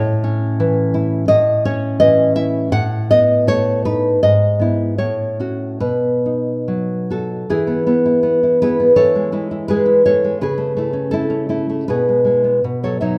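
Sunny and nostalgic, this 13.2-second excerpt of a romantic solo classical guitar piece in E major moves with a rubato feel in 2/4 at 69-86 BPM, its up-front nylon-string guitar sounding dark and full-bodied as it is fingerpicked from G#2 to F#5, with audible finger squeak, moderate recital hall reverb, and a tuning of A4 = 438 Hz, while the harmony passes from A through B7/A and E/G# to B before a new section opens on E at 7.5 seconds and settles onto B at 12.6 seconds.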